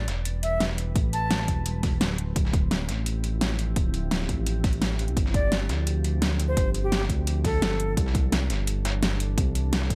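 Rolling, soulful liquid drum and bass drives this straight 4/4 excerpt, with a punchy overdriven electronic kick arriving at 1.0 seconds beneath a fat-snared, metallic-hatted pop kit and a gritty, compressed sampler-style kit, while a smooth, up-front sawtooth bass with vibrato and ring modulation holds the low end under a dark, glassy FM pad that pumps with sidechain and shimmers through ensemble chorus and reverb in the background, as a breathy, close-miked concert flute with tape echo sings reedy phrases over chords moving from Am9 through Dm11 and G7sus4 to C69.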